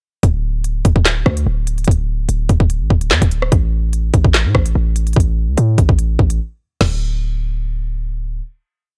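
A half-time drill groove at 146 BPM in 4/4 drives this short, complete hip hop piece, its mood dark and tense. The electronic drill drum kit sits up front with a hard-clipped kick, a woody snare layered with handclaps, rim clicks, a crash cymbal and crisp skipping hi-hats broken up by fast rolls. Beneath it, a hard-hitting 808-style bass delivers punchy, heavy sine tones with a noise layer, a fast attack and a decaying tail, holding long sub-bass notes that follow the kick and slide in pitch between D1 and A2. Both parts enter together at 0.2 seconds for the hook, and after a brief break the drums stop at 6.9 seconds, leaving the bass to ring out alone on a final note until 8.4 seconds. The mix is dry, with little reverb, and its hardware recording gives the whole track a gritty edge.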